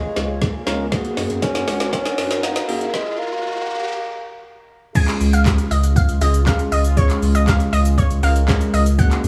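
Carefree and summery, this dance-pop excerpt at 119 BPM opens with a build-up in which a bassoon with light vibrato carries the melody through tape echo over a detuned sawtooth pad, a deep, round analog bass, a background riser, and a bell-like tine electric piano entering at 0.7 s, all but the bassoon and riser pumping to the sidechain. A smooth R&B drum kit with a soft kick, woody snare, metallic hats, handclaps, shaker and crash, overdriven and up front, plays a fill before a stop at 2.9 s. At 5.0 s the drop arrives, and a bright, detuned analog pluck with a noise layer and moving notch takes over the melody through chorus and tape echo, all set in a digital ambience.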